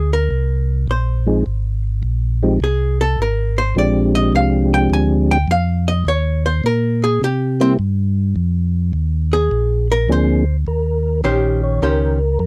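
Bluesy and swinging, this short soul jazz organ trio cut moves at 104 BPM in Eb major, with a clean, picked hollow-body archtop guitar taking a solo from the start until 10.7 seconds over a round, dark tonewheel organ bass with audible key click and slow rotary speaker. A second tonewheel organ enters at 1.3 seconds with a soft, flute-like melody voice, its percussive second-harmonic attack and chorus vibrato turning through the slow rotary speaker. The dry, close recording has a 1970s studio character, with chords moving through Bb13 and Bb9 before landing on Eb13 as a new section begins at 10.7 seconds.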